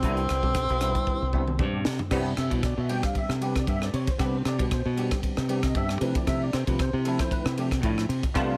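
Electric jazz fusion with a slick, soaring mood and a light swing to its sixteenth notes, cut from a longer piece. A breathy tenor saxophone opens with a clear, scooped note carrying vibrato and a subtone quality, up front and present, but it drops out at 1.8 seconds, leaving the band to carry on. A barky tine electric piano, bell-like and clean with an ensemble chorus, plays accompaniment across the whole clip, its chords moving from Cmaj9 to Dm9/C at 6.0 seconds. Underneath, a punchy fingered electric bass sits direct and prominent in the mix. The acoustic fusion kit brings a high-tuned snare and tight kick in a pumping small room, with a drum fill from 1.1 to 2.1 seconds leading into the next section, all set in light reverb.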